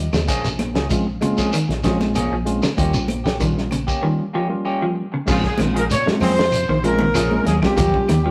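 Afrobeat with an intense, defiant mood, opening on a worn, slightly out-of-tune tine electric piano fill lightly overdriven through a combo amp, over a round, punchy fingered bass, clean picked guitar arpeggios, dark hollow-body guitar stabs, a dry, up-front 70s drum kit with a fat snare and dark cymbals, woody claves, grainy shekere and bright, high-tuned congas in the background, all in a rough rehearsal-room recording with stone room reverb, and at 5.3 seconds a tight, vibrato-laden horn section joins with the melody.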